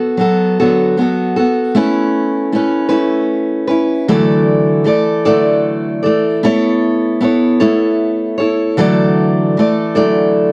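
In a straight 6/8 at 51 dotted-quarter beats per minute, this short rock excerpt in A major rests on a single picked steel-string acoustic guitar, played up front, spanning D3 to D5. It opens on a D6 chord before settling at 1.7 seconds into an unhurried alternation of Aadd9 and Dadd9 that carries an open-road feeling. A light reverb and a dark, warm production give the guitar's concert-style tone a mellow glow.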